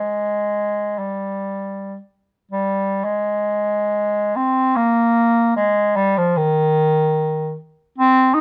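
The recording has a dark, warm glow, with light reverb around a single bass clarinet placed up front. This short classical fragment, cut from a longer piece, is free and expressive in 3/4, its rubato phrasing carrying a nostalgic, lyrical mood. The unaccompanied bass clarinet has a clear, vintage tone with soft attacks, singing between Eb3 and Eb4 as the music shifts into a new section at 3.0 seconds and continues to 8.4 seconds.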